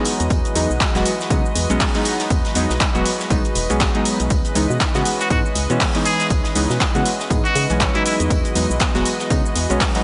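Deep and hypnotic, this deep house excerpt rides a swung groove where a punchy, overdriven electronic kick and a layered kit of handclaps, hi-hat and shaker sit over a hollow, organ-like FM bass with tube saturation and sidechain pumping. A smooth, detuned analog pad and soft, mellow chord stabs with chorus and delay move from Emaj9 to C#m9 and back, while a tight acoustic kit of hi-hat, snare and tambourine stays in the background. From 5.2 to 8.1 seconds a nasal, straight-muted trumpet plays a brief jazz-style solo roughened by 12-bit sampler grit and analog delay, all in a dreamy mix soaked in lush hall reverb.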